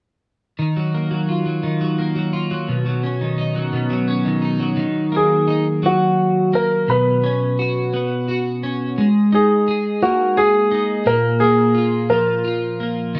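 A clean, picked twelve-string electric guitar opens at 0.6 s, double-tracked and compressed so its chords sit up front, moving from Ebmadd9 to Badd9. This short melancholic pop passage, cut from a longer piece, unfolds in a slow, straight 6/8 with a dramatic weight. At 5.2 s a polished grand piano enters with the melody, present and close with a short sustain, staying in a narrow upper-middle register. Beneath it the guitar carries the harmony through Ebm, Bsus2 and Absus2 before settling on a bare Bb5. A moderate echo chamber reverb gives the recording a warm, roomy depth, and the piano's final note ends at 12.8 s, just before the guitar's last ring at 13.2 s.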